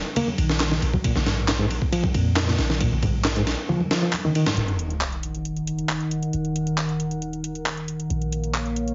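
A deep, boomy 808-style bass opens this energetic, funky breakbeat fragment in Eb minor at 136 BPM, soon joined by a reedy electric piano riff with fast tremolo, tube saturation and delay, a gritty, pitched-up sampler break of thumpy kick, high-tuned snare and ride, bright congas in the background, and a garage kit's handclaps and metallic hi-hats, until at 4.6 seconds the break, piano and congas stop as a sub drop lands and a warbling, nostalgic lo-fi pad with chorus, 12-bit grit, sidechain pumping and a filter sweep comes in up front from 5.2 seconds, heard through a heavily compressed, radio-like mix with moderate reverb.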